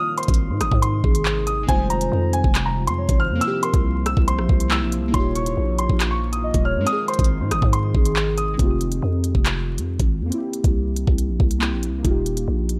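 A half-time drill groove at 139 BPM in 4/4 drives this cold, dark hip hop excerpt in F minor, with an electronic, up-front kit of knocking kick, crisp hi-hats, handclaps and rim clicks running from 0.2 seconds to the end. A growling, buzzy 808-style bass with a fast attack and decaying notes sits just as far forward, rooting a cycle of Ab, Fmadd9, C7 and Ebadd9. Over the opening stretch a clear, natural concert grand piano carries the high melody with a touch of delay, while a hollow, woody clarinet-like synth lead adds a soft second line colored by chorus, phaser, vibrato and delay. Beneath them a deep, moody ambient pad holds sustained chords in the background, its slow attack and long release bathed in chorus and its own reverb. From 1.6 seconds glassy, airy digital keys join as accompaniment, chorused and shaped by a low-pass filter sweep, and after the piano, lead and pad drop out near 8.6 seconds they remain with the drums and bass over the repeated chords. 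The dry mix is dusted with audible vinyl crackle.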